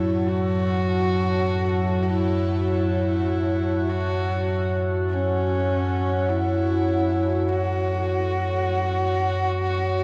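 Cavernous and ominous, this dark ambient drone fragment in F# minor drifts in free time, with a husky, nasal horsehead fiddle carrying an up-front melody with light vibrato, portamento and tape echo over a deep, rumbling drone and a moody, detuned analog pad shimmering with chorus and phaser, while a pure, mellow quartz singing bowl rings soft arpeggios in the background until 5.1 seconds and a bright, bubbling stepped-filter texture fades out beneath it all, the whole steeped in a cathedral reverb and worn, warbling cassette tape.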